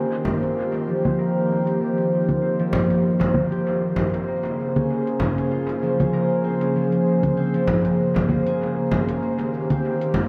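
A wet, echo-heavy mix set in a spacious chamber reverb frames this short organic downtempo section, cut from a longer piece, moving at 97 BPM in 4/4 with a light 16th-note swing in Bb dorian, earthy and warm in mood. A soft, breathy pad with chorus holds sustained chords from Cm7 to Bbm9 and back while an up-front, bright concert harp plays thumb-plucked, ringing arpeggios through a filter sweep and dub echo, and a bronze singing bowl rings barely audibly beneath. Filtered electronic hi-hat, shaker and congas with metallic hats enter at 0.1 seconds, joined at 0.2 seconds by a deep, distant frame drum trailing dub echo.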